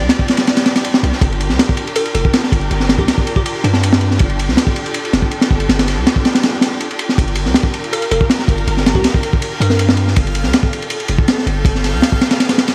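A dry, gritty small-room recording dusted with vinyl crackle frames this frenetic, raw drum and bass and jungle excerpt at 161 BPM in G minor, built on a Gm7 chord, with a brief break arriving at 6.4 seconds. Crunchy, saturated breakbeat drums with a punchy kick, high-tuned snare and dark ride cymbal sit up front beside a deep, sine-toned 808-style bass, while a dark, lush bowed string section holds expressive chords with vibrato. In the background, a glassy, crystalline wavetable pluck treated with chorus, cassette tape and dub echo plays the melody in two short phrases, and from 7.2 seconds a reversed, dreamy granular texture swells in high above with its own reverb.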